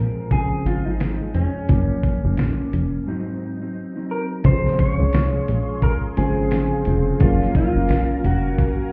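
Muffled as if heard through a wall and steeped in club reverb, this hazy, nostalgic indie and bedroom-pop piece sets a slightly broken-up, picked guitar melody through a small old amp with tape echo over a dark, fingered electric guitar shimmering with chorus and vibrato, a punchy, plucky analog bass, and a gritty, compressed sampler-style drum kit with a thumpy kick and fat snare, pausing for a break at 3.1 s before a cassette-tinged tine electric piano enters at 4.4 s alongside a thick, nasal, detuned unison pad, with a very quiet, jingly tambourine following at 5.1 s.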